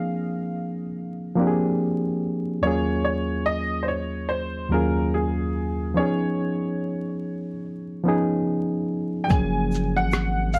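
Lo-fi hip hop at 72 BPM in 4/4 with a swung sixteenth feel, this reflective, hazy excerpt opens on a reedy electric piano supplying chords such as Bb7, Ebm11 and Db9 beneath a woody, slightly detuned upright piano melody, both low-pass filtered and set in worn, warbling tape, vinyl crackle and a moderate reverb. At 9.3 s a deep, saturated sine sub bass arrives up front alongside a compressed, pitched-down sampler drum kit with a thumpy kick, hi-hat, rim click and shaker, carrying 12-bit grit, while a grainy egg shaker sits in the background.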